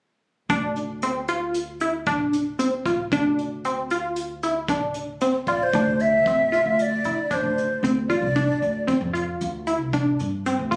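A tight, detuned sawtooth synth plays driving arpeggios through chorus and phaser, over woody pizzicato upright bass and distant brushed drums with a boomy kick, opening this brooding, intricate progressive instrumental in 5/4; an airy wooden flute with vibrato and digital delay carries the melody up front from 5.5 to 8.8 seconds, all captured on a phone in a small room with light reverb.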